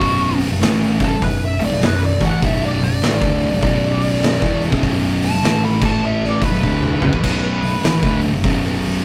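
A swung, heavy 4/4 groove drives this brooding, ominous stoner and doom metal excerpt, built on an oversized low-tuned drum kit that sits up front with a punchy kick, fat snare and gritty, saturated crashes and splashes in a pumping stone room, breaking into a fill at 6.6 seconds. Two thick fuzz guitars grind out the riff in the background over a bright, growling picked bass, while a compressed fuzz lead guitar with wah and distortion solos above until 8.2 seconds. The whole take has the rough, tube-saturated feel of a rehearsal room, moving from B minor through a brief A5 before returning.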